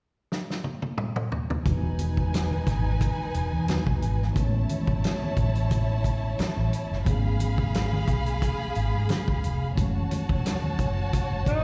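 A dry, fat-snared soul drum kit opens this lush 1970s-style soul excerpt with a fill at 0.3 s. From 1.6 s a bowed, distant violin section with vibrato and a mellow tine electric piano with slapback echo come in, with a round, punchy muted electric bass and low-tuned, ringing congas following straight after, moving through Emaj9, Amaj9, C#7b13/G# and F#m9 in E major at 89 BPM with a light sixteenth-note swing. The warm, romantic groove sounds like a live gig heard through the venue's PA, with small room ambience and recital hall reverb, and a raspy, growling alto saxophone sounds only at 11.5 s as the piece is cut off.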